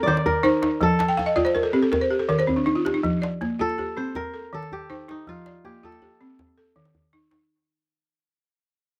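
Set in a flowing 12/8 lilt counted in dotted quarters with a straight feel, this short cut from a longer piece of West African string and xylophone music carries a warm, flowing mood and fades out across its whole length. The balafon spins woody, dry arpeggios struck with rubber mallets, its buzzing tone sitting up front and reaching from Eb3 up to A5. Between 1.0 and 3.0 seconds it breaks into a fill. The kora carries the melody in a narrower middle register, fingerpicked and up front, with a mellow, ringing, crisp acoustic voice. Underneath, a medium-tuned djembe played with hard hands keeps a close, quieter pulse, while the harmony sways between F and Eb and the whole recording sits in light reverb under an open outdoor sky.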